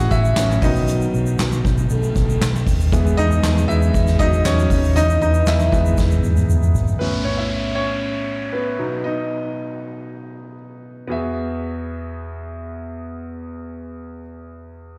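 Piano-driven pop in E major at 117 BPM, this hopeful, warm excerpt is cut from a longer piece and sounds like a live gig heard through the venue's PA, with small room ambience and recital hall reverb. A clear concert grand piano with deep bass sits up front and carries the accompaniment for the full 15.0 seconds, taking solo spots through the opening and middle stretches. In the background, a dark French horn section with light vibrato and a smooth top plays a tight second line in classical style, touched by delay and slapback echo. Underneath, a vintage foam-muted fingered electric bass gives a round, punchy low end, while a soft-mallet drum kit with a boomy kick, dark cymbals, handclaps and toms joins a grainy, saturated tube shaker, the kit closing its run with a fill from 6.0 seconds. At 7.0 seconds the band drops away and an electronic downlifter sweeps beneath the piano, before the harmony settles onto an Eadd9 chord at 11.1 seconds for the closing stretch.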